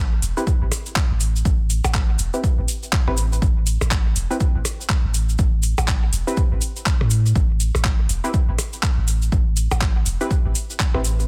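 A swung 4/4 groove at 122 BPM drives this cool, clinical minimal techno excerpt in A minor, anchored by an up-front, punchy analog kick with small-room ambience and a deep sine sub bass whose pitch-drop attack, tube saturation and sidechain pumping sit on an A5 chord from the start. A layered garage kit brings handclaps and metallic hi-hats with a tape-warm tint, while a grainy, close cabasa and produced electronic blips with tape echo add texture. Muted, detuned sawtooth dub chord stabs enter at 0.4 seconds, evolving through a filter sweep with chorus and tape echo, inside a dense, heavily limited digital master.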